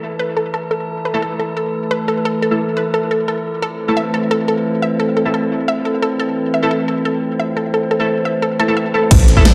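In a straight 4/4 at 175 BPM, this tense, mechanical piece of dark technical drum and bass in A minor opens with an eerie, nasal FM drone holding sustained chords under an up-front, round analog pluck arpeggio with dub echo and bold, ring-modulated orchestra-hit-like stabs, the drone and pluck pumping in a lush hall while a filter sweep plays on the drums, until an impact at 9.1 seconds drops in a snarling, distorted saw bass, a punchy layered electronic kick, a dubstep kit with a huge snare and metallic hats, a gritty, pitched-up breakbeat kit far back in the mix, and a faint sub drop.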